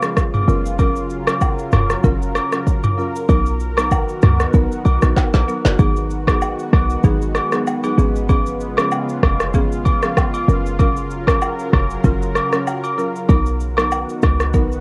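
A mellow, sultry afrobeats groove rolls along at 96 BPM in 4/4, with a gentle 16th-note swing, in a short cut from a longer piece tuned to A4 = 437 Hz. The electronic afro-pop drum kit sits up front with a deep kick, a woody snare, rim clicks, shaker and toms, re-recorded in a small room and coloured by cassette tape. A fill at 5.2 seconds leads into a second section at 5.8 seconds. From 0.5 seconds, a short, punchy 808-style bass joins, its tight sine tone with a noise layer placed just as close. A buzzing marimba on hardwood bars, struck with medium mallets, adds dry, airy accompaniment, while a thick, detuned sawtooth pad holds sustained chords with chorus. Vintage, band-limited agogo bells and woodblock, joined by maracas and a group handclap, sprinkle acoustic colour over changes that move from F#maj7 and Bmaj7 through G#m7 and C#7/G#, all in a close, homespun cassette sound with little reverb.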